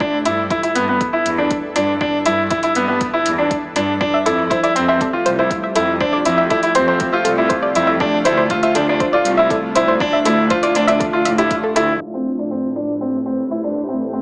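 Piano and strings electronica with a melancholic, hypnotic mood, in which a bright, up-front concert grand piano repeats a riff through digital delay over a rich bowed cello section bass with sidechain pumping, a blurred granular cloud pad fading in behind, and an overdriven electronic kick drum and metallic hi-hat, while a soft, round pluck adds chorused arpeggios from 4.1 s until a filter sweep at 12.0 s closes this excerpt in lush hall reverb with a small-speaker tone.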